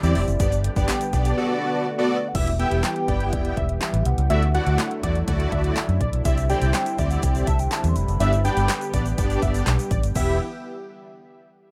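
Dance-pop in E minor at 123 BPM, this driving, bittersweet clip moves in a straight 4/4 and is cut from a longer piece. A punchy analog drum machine with tape-warm kick and snare, hi-hat, handclaps and crash cymbal drives it, dropping out between 1.4 and 2.4 seconds before returning, while a dark, round, foam-muted fingered electric bass sits up front and pumps with the sidechain. A big, bright polysynth of fat, detuned sawtooth and square waves carries the accompaniment, with a lush, warbling unison pad holding sustained chords in the background. Across the whole clip a hollow, woody clarinet-like synth lead with vibrato and tape echo sings the melody softly from behind, joined at 2.4 seconds by a thick, mellow unison lead, also pumping and echoed, as the chords move through Em, Dadd9, Cadd9 and G. A grainy egg shaker adds texture at the start and again toward the end, and the whole thing has the dry, rough feel of a home demo with little reverb.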